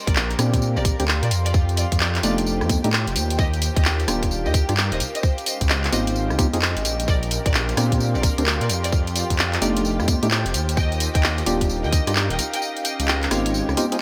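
A swung two-step groove at 130 BPM drives this soulful, bouncy UK garage excerpt in Bb major: a tight, layered electronic kick and an up-front garage kit of congas, handclaps, warm hi-hats, rim clicks and tambourine in gated reverb sit under a deep, rumbling detuned saw bass, hollow chorused organ stabs, a woody, lush violin section with vibrato and digital delay in the background, and two sidechain-pumped pads, one airy and breathy, the other warbling and lo-fi, in bright 1980s-style digital production, until the kick drops out at 12.6 s.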